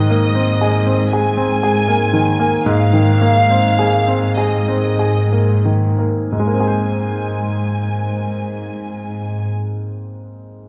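A dark, warm production sits in the generous reverb of a scoring stage, giving this cinematic fragment of a longer piece an uplifting, tender mood. A concert grand piano carries the accompaniment up front, its brilliant tone reaching down into deep bass, and it rings on alone after the strings stop at 9.5 seconds, closing out at 10.7 seconds. Above it, a studio violin section sings the melody in a focused, close ensemble voice with vibrato, while a symphonic cello section holds the bass with smooth, even bowing. The flow is rubato in a lilting six-eight, slowing through the opening passage before a second passage begins at 6.3 seconds.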